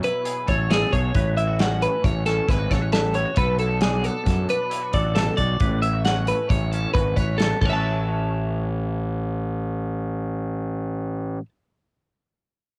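Set in a straight 5/4, this wistful, intricate slice of math rock and midwest emo rides a loose indie drum kit with a tight kick and rolled-off top that drops out at 7.7 seconds, while an overdriven, round, punchy fingered bass sits up front. A bright, compressed twelve-string electric guitar spins picked arpeggios over chords such as B13sus4, A69 and Bm7, with a scooped, twangy electric guitar tucked in the background under an ensemble chorus. Cassette tape colours the guitars and drums, and light reverb gives the home recording its intimacy.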